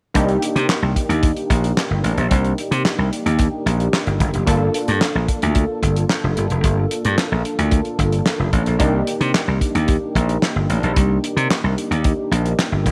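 A bright, punchy slap bass sits up front in this short cut from an early-eighties boogie funk groove at 111 BPM, carrying a funky, late-night mood over Cm9, Gm9 at 4.5 seconds and Cm9 again at 8.8 seconds. A dry, damped 70s drum kit with a fat snare, tight kick, hi-hat and handclaps keeps a straight 4/4 feel with a rolled-off top. A nasal, detuned polysynth comp with a filter pluck and chorus adds mellow, sustained chords, all within a light reverb.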